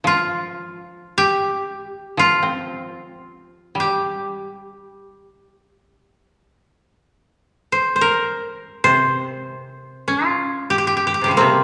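This is Japanese traditional chamber music for two kotos, austere and calm, moving in free time in C in the sen scale. One koto plays an accompaniment part from the opening moment, staying in a low register between C3 and C4, with a warm tone that sits up front. The second koto carries the melody, entering at 0.1 seconds and ranging from C3 up to C5 with a mellow character, and it is clearly the louder of the pair. Both instruments are plucked with fingerpicks and share a dry, woody attack. The players sit in a concert hall whose generous 1.9-second reverb lends the lines a spacious, contemplative air. The 11.6-second clip, cut from a longer piece, holds a single unbroken section.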